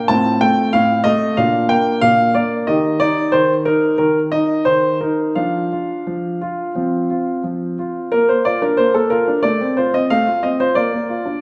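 A straight 4/4 pulse moving at 84-94 BPM carries this graceful, cheerful classical-period sonatina in Bb major, heard as a short piece cut from a longer work. A solo baby grand piano plays throughout its 11.4 seconds, its tone warm, open and sustaining long, placed up front and spanning from A2 to A5. The harmony moves through F/A, Bb and Eb before settling on Dm/F and an F5 chord in the opening section. At 8.1 seconds a second section begins on Bb, passing through F/A and returning home to Bb at 10.7 seconds. A wet recital hall reverb with a decay of 1.5 seconds surrounds the instrument, lending the performance a sense of space.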